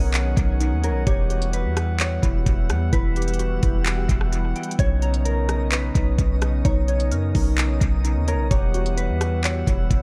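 Atmospheric cloud-rap hip hop at 129 BPM in a half-time 4/4 feel, this dreamy, blissful excerpt in B major drifts between Bmaj9 and Emadd9 as a deep, boomy 808-style bass and a knocking trap kit of crisp hats, handclaps and rim clicks sit up front, with the kit entering at 0.1 seconds, beneath a smooth principal pipe organ holding romantic chords that pump with sidechain, a dark, clean electric guitar melody coloured by subtle chorus and dub echo, glassy, airy digital key arpeggios with chorus and dub echo, and a twinkling granular shimmer in the background, all set in an echo-heavy digital ambience.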